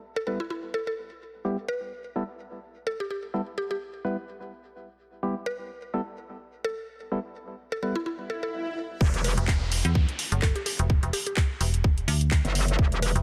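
Bass house with a swaggering, bouncy swing, opening on a woody, round mallet-like synth pluck carrying the melody over hollow, wave-folded organ stabs, both treated with chorus and delay and the stabs pumping against the sidechain. A swell and downlifter arrive at 8.2 s and lead into the drop at 9.0 s, where a tight, up-front electronic kick and a garage kit with handclaps and warm hi-hats join a saturated, aggressive wobble bass and a digital, decaying FM bass. The mix is dry, dense and heavily limited, with a faint mains hum beneath it.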